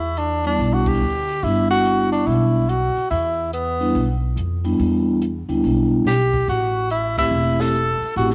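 A swung 4/4 pulse at 142 BPM drives this moody small-group jazz fragment in E minor: a compact cocktail kit with dark cymbals, a high-tuned snare and a punchy kick sits low and dry beneath a woody pizzicato upright bass roughened by transformer saturation. Up front, a mellow tenor saxophone carries the melody with vintage vibrato, and both horn and drums take on a cassette-tape grain, while close-miked soft-mallet vibraphone, motor off, adds a full, metallic ring as accompaniment. Band accents land at 0.8 and 7.1 seconds, the harmony shifts from Em7 to Am7 at 6.5 seconds, and a moderate spring reverb gives the home cassette recording an intimate, dusky room.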